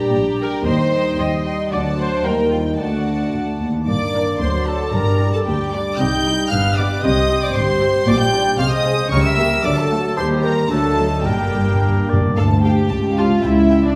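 A dramatic, urgent excerpt from a quick classical-period symphonic movement in 2/4 opens with the full string body, each section bowed sul tasto with a soft attack. Rich violins carry the high melody over a smooth-topped second violin line, violas add accompaniment, and dark cellos and double basses hold the bass beneath mellow French horn chords. At 3.9 s an airy flute group, a warm oboe and a background bassoon join with lines of their own, while close, dry timpani strike briefly at 4.9 s and return for a fill at 11.3 s, all within a wet recital-hall reverberation.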